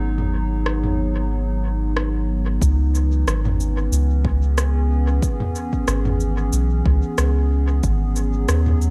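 A warbling, lo-fi pad with chorus and built-in reverb holds dark, nostalgic chords over a soft, round sub bass that sits up front, opening this hazy, meditative ambient dub excerpt on G#m7 before moving to C#m7 at 2.6 seconds and back to G#m7. An overdriven electronic kit of rim clicks, shaker and toms, filtered during its first seconds and trailed by dub echo, ticks along with a light swing in a small-room space. A deep, layered kick with its own overdrive and large-room character joins at 2.6 seconds and drops out at 8.0 seconds, all set within a digital, echo-heavy ambience.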